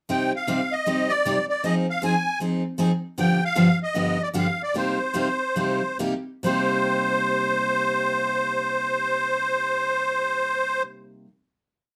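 Bittersweet and fiery, this short jazz piece in C minor swings at 132-156 BPM in 4/4, built from motif-based sentence phrases. A musette accordion carries the melody up front, its reedy, shimmering voice colored by the wavering wet musette tuning, and it plays from 0.1 to 10.8 seconds. Beneath it, a picked steel-string dreadnought guitar with fresh strings gives a bright, full-bodied four-to-the-bar rhythm, its chords short and accented on two and four, and it rings on until 11.3 seconds. The harmony moves from Cmadd9 through Fm7 and G7 to Cm7, with the pace slowing between 3.2 and 6.4 seconds before the piece settles onto a held final chord. A moderate studio ambience keeps both instruments close and present.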